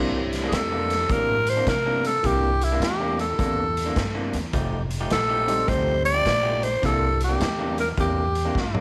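Light reverb and a small room's ambience surround this swaggering, laid-back electric blues shuffle at 105 BPM in C mixolydian, swung on the eighths and moving from C9 to F9 and back. A raspy, growling tenor saxophone sits up front from 0.5 seconds with scooped notes and light vibrato, over a slightly broken-up, lo-fi electric guitar riff through a small old amp, a woody, thumpy pizzicato upright bass and a saturated garage drum kit with a punchy kick and a rolled-off top. A warm upright piano with long sustain accompanies in the background until 7.2 seconds, and the drums play a fill at 8.5 seconds as the excerpt cuts off.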